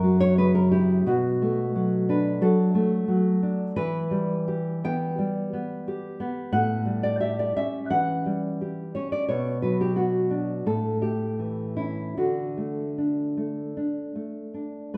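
Set in a moderate recital-hall reverb, this nostalgic, tender romantic excerpt features a solo nylon-string classical guitar, up front with a fresh-stringed, thumb-plucked tone, moving in a rubato 4/4 at 73-92 BPM through a D major progression that opens on a high F#5 and passes through Bm7, Em and A7 before settling on D at 12.2 seconds.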